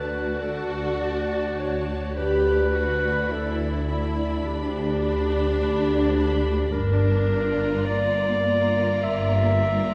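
A present, punchy clarinet sits up front with its second line in this slow, rubato romantic orchestral movement at 52 BPM in 4/4, melancholic and solemn, as a distant, focused violin section carries the high melody, a lush second violin section adds an expressive line beneath, smooth, even violas fill in the accompaniment, and cellos with a soft attack join warm double basses on the bass through D, G/D and Gm7, the ensemble heard from further back in the wet reverb of a scoring stage in this passage cut from a longer piece.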